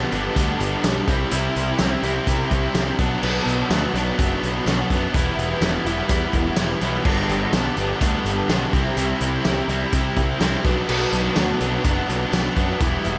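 A straight 4/4 pulse at 125 BPM drives this wistful, jangly indie rock excerpt, with a loose, acoustic drum kit entering at 0.1 seconds, its fat snare and punchy kick sitting up front in a mid-forward studio room sound with a rolled-off top. Two picked electric guitars share the riff across G, C, Bm and Em: a crunchy overdriven one placed up front with ensemble chorus and tape echo, and a bright, scooped high-gain one with distortion. Beneath them, a fuzz-laden picked bass carries the low end, while a very quiet, jingly tambourine in a live room arrives at 0.8 seconds, all under light reverb.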